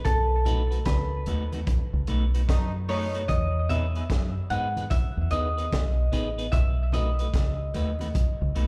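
Warm and uplifting, this short roots reggae clip sits at 74 BPM in E major with a swung feel, moving from B7 to Emaj7 and back while the band hits an accent in its opening seconds. A ringing, fingerpicked concert harp carries the melody through dub and slapback echo. Beneath it sit a round, foam-muted dub bass up front, a gritty, saturated breakbeat kit with a punchy kick and high-tuned snare, very quiet low-tuned congas, and a clean picked electric guitar with phaser and echo. A mellow, distant horn section offers a brief second line from 2.5 to 3.2 seconds, and the whole performance comes across as a live club gig heard through the venue's PA.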